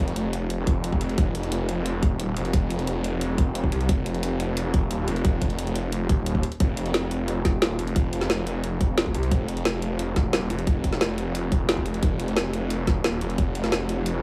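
Dry and close, with a small-room ambience and very little reverb, this dark, tense cut of technical drum and bass drives at 177 BPM in straight 4/4, tuned slightly flat to A4 = 437 Hz. A snarling, growling saw bass sits up front from the opening second, its detuned unison layers, resonant moving notch, distortion and overdrive pumping against the sidechain between Eb1 and C2. A layered electronic kit supplies a woody snare and bright hi-hats, while a separate tight electronic kick enters at 0.7 seconds and hits hardest in the mix.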